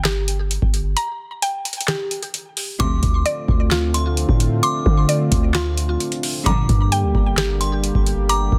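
Brooding and hard-hitting, this half-time trap fragment sets a woody, chorused mallet-like synth pluck's arpeggios over a deep, boomy 808-style bass and an up-front analog drum machine with a deep kick, crisp snare, handclaps and metallic hats, and from 2.8 s a tinkling synth tine bell line, brief lush bowed string stabs and, at 3.1 s, a dark detuned analog pad with slow-blooming sustained chords join in, all dry and densely limited.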